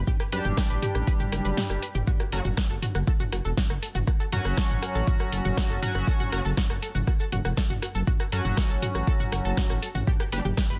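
Hypnotic and dramatic, this melodic techno passage, cut from a longer piece, moves at 120 BPM in a straight 4/4, set in F# phrygian with harmony shifting from G to F# minor at 2.1 seconds and back to G at 10.1 seconds. A menacing detuned saw bass, sustained and saturated, evolves through filter swells and pumps against the sidechain, while an overdriven electronic kick sits up front with deep weight, dropping out briefly from 1.6 to 2.1 seconds. A deep house kit of hi-hat, rim click, shaker, punchy snare and toms, also overdriven and re-recorded in a small room, drives alongside it with its own sidechain pumping. Above, a tight sequenced synth spins driving arpeggios, its plucked tone roughened by vintage 12-bit sampler grit, chorus and tape echo. A sync-sweep polysynth adds bright, edgy stabs with a nasal, ring-modulated sweep, coloured by cassette tape and echo, all within a dense, heavily limited mix carrying little reverb.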